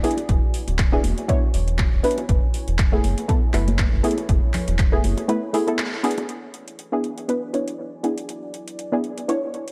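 Deep house excerpt, smooth and moody, where a punchy analog kick re-recorded in a large room and a round, saturated sawtooth bass drive things until about 5 seconds, while muted, detuned dub chord stabs with chorus and analog delay sit up front over a warbling, vintage pad, a layered kit of claps and metallic hats, and bright, hard-handed bongos and congas in the background that drop out at 6.3 seconds, all caught in a dry, gritty hardware recording with light reverb.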